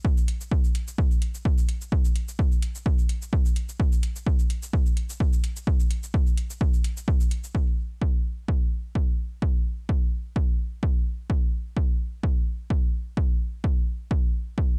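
A punchy, analog electronic kick drum sits up front through this meditative, deep techno excerpt at 128 BPM in 4/4 with a light 16th-note swing, joined until 7.5 seconds by a layered, overdriven shaker and metallic hi-hat, low-pass filtered and re-recorded in a large room, all within a dark, dry production.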